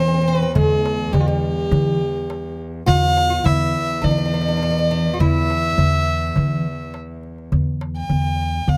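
Stately and passionate, this Arabic maqam ensemble piece in E maqam huzam moves at 103 BPM in a straight 4/4, cut from a longer performance. A single bowed violin carries the melody up front with a soft, floating sul tasto tone, while a fretless oud with double strings adds a woody, plectrum-plucked second line until 6.9 seconds, and a plucked upright bass anchors the low end. A close, bowed cello holds a rich vibrato drone on E2, and a crisp metal-shell darbuka played with hard hands enters at 0.3 seconds, all set in light reverb.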